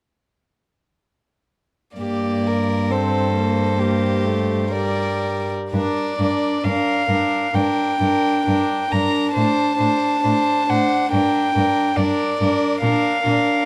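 Classical string quartet in a slow, romantic movement, this excerpt in G minor carries a yearning, elegiac mood at a loose 56-72 BPM in 4/4, with the pulse pulled and stretched in rubato. All four players enter together at 2.0 seconds, and the first violin sings the melody up front with a soft, airy bow drawn over the fingerboard, its pure tone seeming to float. The second violin shares that sul tasto delicacy on a quieter inner line beneath it, while the viola adds a dark, smooth accompaniment lower down. The cello anchors the bass with a gentle attack and a slightly distant feel, ending at 13.3 seconds just before the others finish at 13.7. A brief opening passage gives way at 5.7 seconds to a longer second section, with the harmony holding on G minor before moving through D over A, back to G minor, and settling on B-flat. Close, detailed microphones catch each bow stroke, framed by a moderate recital hall reverb.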